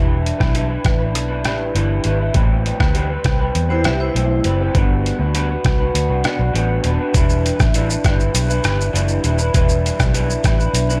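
A straight, unhurried 4/4 pulse carries this hazy, laid-back slice of indie and bedroom pop, cut from a longer piece. From 0.3 seconds a trip hop sampler-style kit sits up front, pitched down and gritty, with a thumpy kick, hi-hat, rim click and shaker that sound compressed and tape-warm. Beneath it, a vintage muted fingered bass gives dark, round, foam-muted low notes, while an electric guitar through a small old amp picks out the harmony in a twangy, slightly broken-up, lo-fi tone, its lush chorus and warbly pitch drift adding to the dreamy haze. The chords move from Em7 to Am9 to Gmaj7 before returning to Em7 as a new section begins. Between 3.7 and 4.7 seconds a vibraphone struck with hard mallets adds a brief, close-miked, metallic, ringing line, colored by ensemble chorus and tape echo. The room is kept fairly dry, giving the recording an intimate, home-made closeness.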